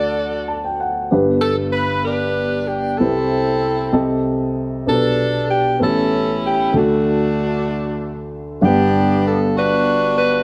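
Soulful and reverent, this gospel excerpt in 6/8 at 64 BPM in G major sets a clear, tight saxophone section singing the melody with jazz-style vibrato over a dark, woody upright piano whose long sustain carries the accompaniment and an opening fill from 0.2 to 1.1 seconds, moving through chords such as C, Cm6 and A9 before settling on Gmaj7 at 8.6 seconds, all bathed in a moderate echo chamber reverb.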